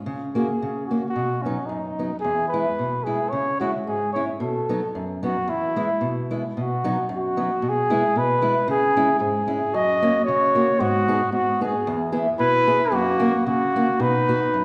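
Alpine folk dance-band music in 2/4 at 112 BPM with a light swing, jolly and bouncy, starting in E major and moving to B major at 6.5 seconds. An up-front, fingerpicked, ladder-braced acoustic guitar with old strings gives a woody, boxy accompaniment beneath a dark, classical-style trumpet melody with light vibrato and a smooth top. At 9.7 seconds a clear, close-miked clarinet enters in the background with a second line, all set in the wet reverb of a recital hall in this excerpt from a longer piece.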